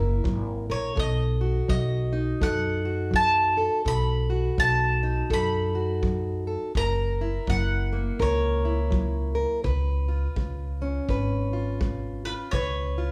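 Captured live in one large, moderately reverberant studio room, this soulful, gritty acoustic country blues excerpt swings easily through F#7, B7 and C#7 as a boxy, fingerpicked parlour guitar, plugged in, and a woody, growly pizzicato upright bass sit up front beneath a bright, round double-strung mandolin melody entering at 0.7 seconds, with a punchy, natural kick drum underneath.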